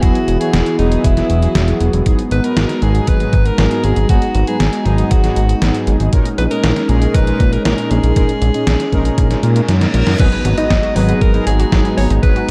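Cinematic and nocturnal, this synthwave excerpt pairs a breathy, edgy alto saxophone solo, with scooped notes in a pop style, against a smooth analog pad that pumps from sidechaining, bold brassy synth stabs treated with chorus, and a fat, thick sawtooth bass sitting up front under a thumpy electronic kick and a detuned 8-bit drum machine. At 9.5 seconds a reverse cymbal, joined shortly after by a drum fill, leads into an impact at 10.2 seconds, where a lush, bright unison pluck enters with delayed arpeggios in the background. The production is dark with light reverb, and the saxophone carries a digital delay.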